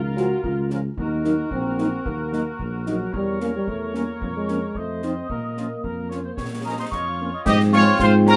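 A resolute, martial wind-band march in Bb minor at 111 BPM in a straight 2/4 opens on a dark, up-front tuba and a clear, distant woodwind section, joined at 0.2 seconds by a mellow trumpet section carrying the melody, a solo euphonium and a close-miked French horn section, with concert snare, bass drum and bright clash cymbals in a small room, before an airy piccolo enters high at 6.7 seconds and a warm trombone section adds sustained chords in the background from 7.5 seconds, all under light reverb in this short cut from a longer piece.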